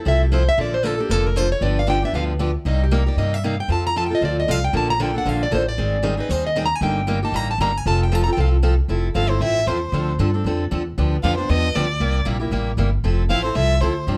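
Swinging eighths drive this playful, fast jazz manouche passage, where a picked parlour steel-string guitar with fresh strings comps over a woody, thumpy gut-string upright bass played pizzicato, a plugged-in steel-string guitar carries the solo melody until 8.5 seconds, and a bowed violin with vibrato and portamento enters at 9.2 seconds for an expressive, soft-attack solo, all heard up front in a close, dry recording.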